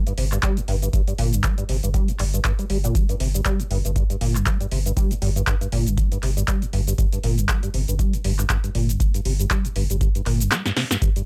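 A squelchy, resonant acid bass leads this short cut from a longer acid house track, its sawtooth riff running from F2 to G3 with overdrive, analog chorus, tape echo and sidechain pumping while a filter sweep moves across it for the full 11.3 seconds. Set at 119 BPM in 4/4 with a 16th-note swing and rooted in G minor pentatonic over a G5 chord, the groove feels hypnotic and raw. Beneath it, a round sine sub bass holds a sustained G1 and pumps with the sidechain, while a deep, tape-warm electronic kick anchors the pulse. An analog drum machine adds a punchy snare, handclaps, metallic hi-hats and shaker, with a short room on the snare, clap and hats, and a drum fill arrives at 10.5 seconds. The mix is dry and close, with the acid line sitting up front.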